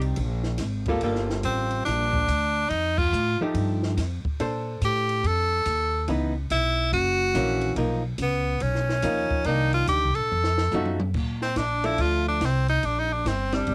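An edgy, forceful tenor saxophone with scooped notes leads this relaxed, sophisticated small-group swing and bop excerpt from a home cassette recording, entering at 1.4 seconds over a dark, clean, picked hollow-body archtop guitar, a woody, thumpy pizzicato upright bass on gut strings, and a dry compact cocktail kit with dark cymbals, a high-tuned snare and a punchy kick, with a band accent at 2.9 seconds and a drum fill leading into the saxophone's solo at 11.1 seconds.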